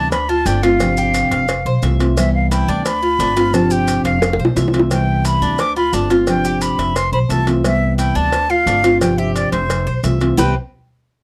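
Sunny and warm, this Cuban son and guajira excerpt moves at 175 BPM in C major, with a breathy, vibrato-tinged silver flute carrying the melody up front over a dark, full-bodied nylon-string guitar (thumb-plucked, with audible finger squeak) and the bright, metallic picked arpeggios of a double-strung tres. A woody, thumpy pizzicato upright bass on gut strings anchors the low end, while tight, high-tuned cowbell and bongos drive the groove, with a fill at 4.2 seconds, and grainy maracas sit softly in the background. The harmony cycles through Dm7, G7sus4, Fmaj7 and Cmaj7, and the dry, close sound evokes a 1970s studio session.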